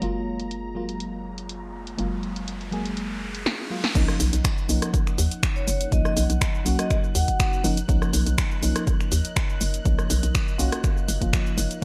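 A warbly, nostalgic tape-like pad and a silky string machine hover in the background beneath round FM electric piano stabs with chorus, phaser and delay, a hollow, bouncy FM bass and a punchy analog drum machine with low-passed hats, snare and cymbals and gated reverb, the pad, strings, piano and bass pumping to the sidechain, until an electronic riser from 1.3 s and a drum fill lead into the drop at 4.0 s, where a layered electronic kick enters and a metallic, ringing vibraphone melody with delay appears at 5.6 s, giving this sunny deep house excerpt its bright 1980s-style digital sheen.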